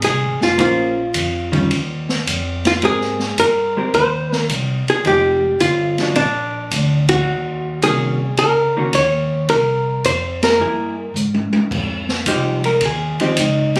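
A swung 4/4 groove at 108 BPM drives this cool, late-night jazz excerpt in Bb minor, played by a small swing-and-bop group. The open drum kit sounds natural in a small room, with dark cymbals, a medium-tuned snare and a boomy kick, while the upright bass is plucked with a woody tone beneath it. A miked and amplified archtop guitar carries the melody up front with a clean, compressed sound, and a vintage hollow-body jazz guitar enters at 0.6 seconds to comp with its own picked, shadowy voice. The harmony moves through rich extended chords such as Bbm9, Abmaj9 and C7sus4, and the band hits two accents together along the way. The melody drops out at 11.1 seconds, a drum fill from 11.2 seconds leads into a new section on Fm9, and the sound has a phone-in-the-room quality with moderate studio reverb.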